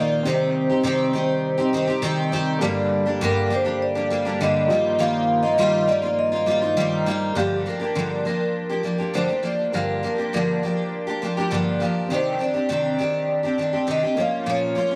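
A moderate plate reverb gives this short cut from a longer acoustic pop piece a roomy glow, and the mood is easy-going and heartfelt in a straight 4/4. Up front, a picked, double-tracked dreadnought steel-string acoustic guitar sounds woody and full-bodied, with the seasoned tone of old strings. A vibraphone played with medium mallets carries the melody, its metallic, ringing voice colored by a medium motor vibrato and a slapback echo. Beneath them, a very quiet felt-muted upright piano adds mellow, intimate accompaniment with audible action noise. In the background, a fat, clean tonewheel organ holds sustained chords through a slow rotary speaker until it drops out at 7.3 seconds. The harmony moves from Cm through Gm and Ebadd9, then shifts to Gm7, Cmadd9 and finally Bbm once the second section begins at 7.4 seconds.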